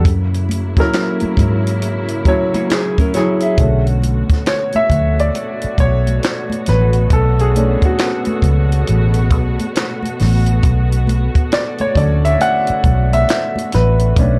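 A slow, swung sixteenth-note groove in four sets the pace: a compact cocktail drum kit plays dry and up front, with a tight kick, a high-tuned snare, hi-hat and handclaps, while very quiet congas add a bright, thin-skinned touch from a live room. This is smooth, late-night neo-soul and R&B, cut from a longer piece. A vintage fingered electric bass, foam-muted, round and punchy, sits loudest in the mix, and a muted string section holds veiled, bowed chords with soft attacks and vibrato far in the background. A grand piano carries the accompaniment with an intimate, natural tone, its action noise audible up close, and takes a solo from 3.6 s through to the end. Just before that, an electric guitar through a small old amp plays a brief second line from 2.5 s to 3.8 s, slightly broken-up, picked and compressed with a lo-fi edge. Light reverb wraps the dark, warm production.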